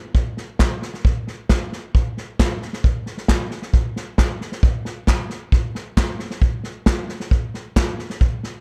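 Folk in 4/4 at 134 BPM with a straight feel, this short cut from a longer piece carries a wistful, yearning mood across roughly 8.6 seconds. An unplugged acoustic drum kit enters at 0.1 seconds, its medium-tuned snare and tight kick played with bundle sticks, sounding roomy yet up front in the mix. A group of human handclaps joins at 0.6 seconds, hollow and acoustic with a live-room character, sitting well beneath the drums. The production is dark and nearly dry, with little reverb. The result is a sparse, intimate percussion bed that fits the folk style.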